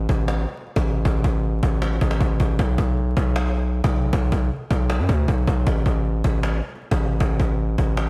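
A distorted 808-style bass opens this dark, hard-hitting trap excerpt at 0.0 s, its saturated sine tone carrying an aggressive noise layer, a fast attack and a heavy, decaying body that sits up front between A1 and F#2. A woody, acoustic cajon joins at 0.1 s with faint snares, set close in a live room, and the groove moves at 156 BPM in 4/4 with a half-time feel, tuned to A4 = 439 Hz. Small room ambience and vinyl crackle surround both parts until the cut at 8.1 s.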